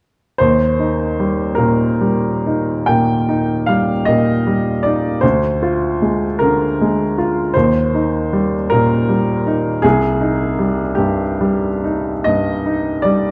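A clear, woody upright piano sits up front from 0.4 s in this nostalgic, dreamy romantic nocturne in Eb major, cut from a longer piece, drifting in a rubato 12/8 at 44-54 BPM through Eb, Bb7/D, Eb and Cm, spanning C2 to G5 within a moderate recital-hall reverb and a dark, warm production.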